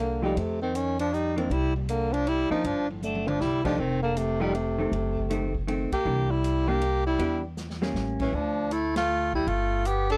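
A breathy, subtoned tenor saxophone carries the melody up front with vibrato and scooped notes, shadowed by a whispered baritone saxophone second line over woody pizzicato upright bass, a dark, clean hollow-body guitar that plays from 0.2 to 8.3 seconds, and a distant, roomy drum kit with boomy kick, all in a playful small-group jazz waltz at 158 BPM in C mixolydian, swinging through chords like F9, F#dim7 and A7b9, with drum fills near 3.0 and 7.6 seconds in this brief excerpt cut from a longer piece.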